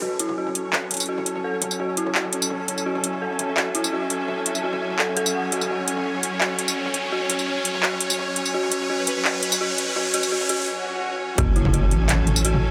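Half-time drum and bass at 169 BPM in F# minor, this spacious, cinematic excerpt builds for its first 11.4 seconds as a lush, bright string section with vintage sampler grit and an eerie, inharmonic detuned synth bell with dub echo move through filter sweeps over a pulsing gated texture, metallic-hatted up-front drums with handclaps, tambourine and toms, and a background riser, before a brief break and swell give way at 11.4 seconds to a drop where a growling, buzzy 808-style bass and a distorted kick land alongside an impact, all inside a huge ambient reverb.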